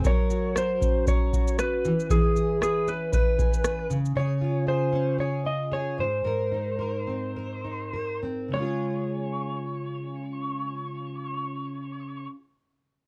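A slightly broken-up, compressed electric slide guitar carries the melody up front through this sunny, carefree acoustic pop fragment in Db major, swinging lightly on the sixteenths at 99-117 BPM. Beneath it, a full-bodied, double-tracked, plugged-in jumbo steel-string acoustic guitar is fingerpicked over chords moving from Gb through E6, Db and Abadd9 back to Db. A booming analog drum machine with a deep kick, rim click and shaker sits up front only until 4.2 s, while from 4.1 s the music slows down until 8.5 s, all in a dry, close 1970s-style studio sound.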